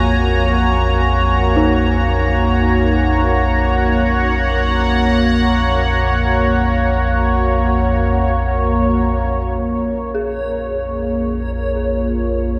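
In free time, this dark ambient drone unfolds as a vast, ominous passage cut from a longer piece and bathed in a huge, wet reverb with a long seven-second-plus tail. Underneath, a deep rumbling drone holds low from the first moment, dark and up front, its slow attack and long release blurring into its own built-in reverb. Above it, a sweeping resonant pad sustains Gb/Bb chords, its detuned sawtooth and sub-octave layers evolving through a filter swell, with chorus lending it a bright, shimmering edge. From 1.6 seconds an eerie, inharmonic FM bell sounds arpeggios in the background, each fast-struck note decaying through chorus and a diffuse ambient delay. At 9.6 seconds the harmony darkens to Bbm, and at 10.4 seconds a reversed, granular texture enters on a single high Db, dreamy and softly swelling into the closing seconds.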